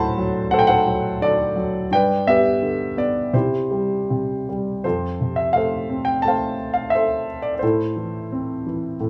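A smooth, vintage-toned grand piano sits up front alone in this short, hopeful piece of lyrical classical solo piano, its short sustain and warm voice spanning D2 to B5. Played with rubato around 86 BPM in 4/4 and tuned to A4 = 442 Hz, it moves from D7 through G to C in C major, then shifts to F major at 4.8 s before settling on A minor at 7.6 s. A moderate small-room reverb lends an intimate, close ambience to this fragment of a longer work.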